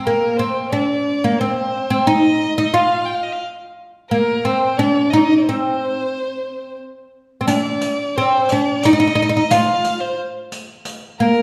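A mellow, woody oud is up front from the start, carrying the melody in a deep low register with the double-string sound of a fretless, plectrum-plucked instrument. Alongside it, a single bowed violin plays a second line higher up, its tone rich, nasal and focused with vibrato and a smooth top, sitting quieter in the mix. This Arabic maqam ensemble moves in C maqam bayati at 89 BPM in a straight 3/4, tuned to A4 = 443 Hz, and the mood is longing and hypnotic. At 7.5 s, as the passage moves into its second section, a riq joins with dark jingles and a small-room sound, low in the balance, and it stops at 11.0 s. The oud and violin ring in the lingering reverb of a church or concert hall, in this brief excerpt cut from a longer performance.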